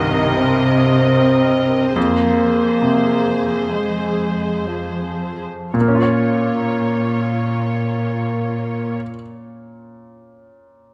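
A sorrowful, bittersweet orchestral film cue in free time and B-flat dorian opens with all parts at once: a bright, polished baby grand piano, a rich, lush viola section, mellow French horns holding sustained chords, and a bowed cello section supplying an expressive bass line. The music slows over its first 5.7 seconds as the harmony moves from Cm7 to Fm before settling on Bbm. The strings and horns fall away around 9 seconds, leaving the short-sustained piano alone until 10.9 seconds in a moderate, detailed scoring-stage ambience, ending a passage cut from a longer piece.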